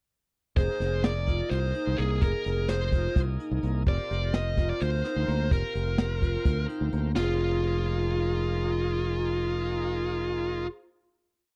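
This short, complete piece of progressive instrumental band music moves in 7/8 at 256 BPM counted in eighths, with a straight feel in F dorian and a tense, intricate mood. A distorted, high-gain lead guitar sits up front, picking a motif-based melody of arching phrases, while a fingered electric bass drives a syncopated riff beneath it. A vibraphone struck with hard mallets rings out a metallic ostinato of arpeggios from the background, its motor off, and a bright tonewheel organ shouts full, lightly overdriven held chords in quartal voicings through a slow rotary speaker. A jazz brush drum kit keeps the 7/8 groove with a punchy kick, medium-tuned snare and dark cymbals until 7.3 seconds, just after the organ adds a fill from 6.5 seconds. The harmony moves from Fm7 to Gm/F and returns to Fm7 for a sustained final chord that closes the piece, all captured in a dry, close 1970s-style studio sound.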